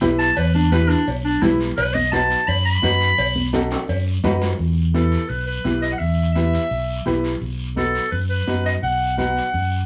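Fiery, passionate cumbia cut from a longer piece, led by a bright, vintage clarinet in classical style that solos up front from 0.2 seconds over a woody, long-sustaining upright piano and a dark, round fingered electric bass moving between E minor and B. Close, raspy guiro scrapes along as soft-handed, high-tuned congas sit in the background, while ringing metal-shell cowbell and timbales add a band-limited vintage color; a drum fill arrives at 3.5 seconds, and the cowbell and timbales drop out at 4.5 seconds. A moderate studio reverb gives the recording a modest sense of room.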